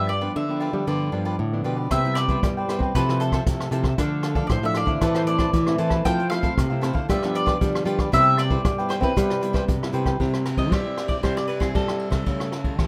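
A rough home demo with light reverb captures this short, playful cut from a longer samba and choro piece in C major, moving at a straight 116 BPM in 4/4. A bowl-back mandolin carries the melody from the start, its bright, double-strung picked tone riding over a crisp cavaquinho that picks out accompaniment until 10.2 seconds. Two fingerpicked nylon-string guitars with a classical touch fill out the lower end, one accompanying up front and the other, warm in tone, holding down the bass line. A jazz brush kit joins at 1.9 seconds, sitting forward in the mix with dark cymbals, a punchy kick, hi-hat, ride and rim clicks in a natural studio-room sound. The harmony winds from G7 through Cmaj7, Fmaj7/C, Dm, Amadd9, Fmaj7 and G7 back to Cmaj7, then the mandolin steps out for a festive solo over C and A7/C# as the passage closes.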